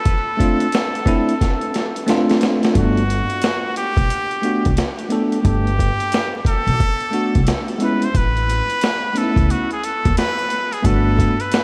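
Smooth and cool, this swung jazz-hop excerpt pairs a nasal, straight-muted trumpet melody with delay and vibrato, which turns into a solo at 2.8 s, with a gritty, pitched-down boom bap kit that has a thumpy kick, a high-tuned snare and a fill before the solo, a clean, bell-like electric piano, and a woody, growly pizzicato upright bass that enters at 2.8 s, all in a dreamy mix soaked in huge ambient reverb and vinyl crackle.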